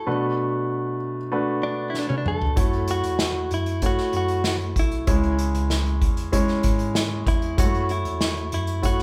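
Dramatic and bittersweet, this short piano-driven pop passage in F# minor at 96 BPM opens with a warm, intimate concert grand carrying the chords, its action noise audible, while a clean, compressed direct-recorded electric guitar plays the melody, then an acoustic drum kit played with bundle sticks enters with a fill at 1.9 seconds and a bell-like tine electric piano takes the bass from 2.6 seconds, all captured as a band playing live in one large studio room.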